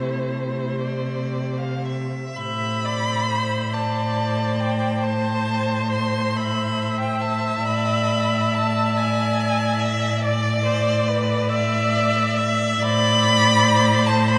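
A smooth, even cello sits up front with a vibrato-laden bass line, anchoring this elegiac, solemn string quartet movement in A minor, tuned to A4 = 444 Hz and unfolding slowly in 12/8 at 37-49 BPM with a rubato feel. Two distant, rich-toned violins carry the melody and a second line with expressive vibrato and portamento, while a close, focused viola gives clear bowed accompaniment. A vast, echoing cathedral reverb with a 5.7-second decay surrounds this short excerpt, which moves from A minor through an E-based harmony at 7.7 seconds before settling back on A minor at 12.8 seconds.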